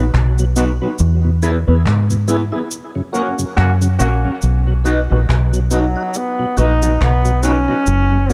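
Laid-back and uplifting, this roots reggae excerpt sits in a dark, warm small room with a relaxed, swung sixteenth-note feel. A deep dub fingered electric bass leads the mix, round and foam-muted with tube saturation. Around it sit a mellow, clean, fingered electric guitar treated with phaser and tape echo, a full, lightly overdriven tonewheel organ with chorus vibrato, slow rotary speaker and tape echo, a snappy vintage cajon played with soft hands, and a close acoustic cabasa. The chords move from B to E to F# and back to B, with band accents from 1.0 seconds and a punchy trombone section entering briefly at 3.1 seconds with tape echo. The second half turns into a trombone solo, and a clear, distant, roomy trombone carries the melody from 5.7 seconds, echoed by tape, until the fragment is cut off.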